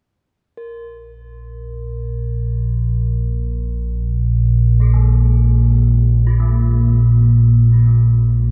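Ominous and vast, this dark ambient drone excerpt in free time opens with a pure, ringing quartz singing bowl struck with a wooden striker at 0.6 s, joined at 1.7 s by an up-front analog drone of evolving sawtooth and pulse-wave tones under lush chorus, spanning Bb1 to Bb2, before a gamelan-type bronze metallophone fades in with shimmering, paired-tuning arpeggios from Eb3 to Ab4 at 4.8 s, its notes trailing into diffuse ambient delay, all set in a vast, echoing cathedral reverb.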